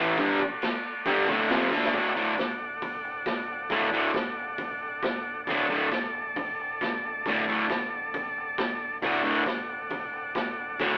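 Squeezed through a telephone-like filter with moderate studio reverb, this rowdy, swaggering garage rock fragment sounds like a small band playing live together in one space. A double-tracked fuzz guitar riff sits up front beside a buzzy vintage combo organ holding sustained chords with heavy vibrato, while an overdriven picked bass growls in the background. A gritty, saturated drum kit with a punchy kick comes in at 0.2 seconds and drives the straight beat, throwing in a fill at 1.7 seconds before the song moves into its next section.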